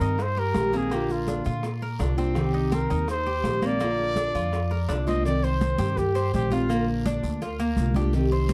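A breathy, whispered trumpet leads this short cut from a longer Cuban son and guajira piece, playing an intimate, close-miked solo melody with soft attack and vibrato up front before falling silent at 6.9 seconds. The mood is sultry and danceable, moving at a brisk 166 BPM in straight 4/4 and in C minor, with the harmony swaying between C minor and B-flat major throughout. A woody, thumpy pizzicato upright bass on gut strings sits prominently in the mix. A jumbo steel-string acoustic guitar picks a full-bodied accompaniment, and a metallic Cuban tres with doubled strings adds bright arpeggios. In the background, hard-hand congas with a thick skin, raspy guiro and grainy, saturated maracas keep the groove, joined at 0.2 seconds by tight, vintage-sounding bongos and cowbell. The production is dark and warm, with light reverb around the band.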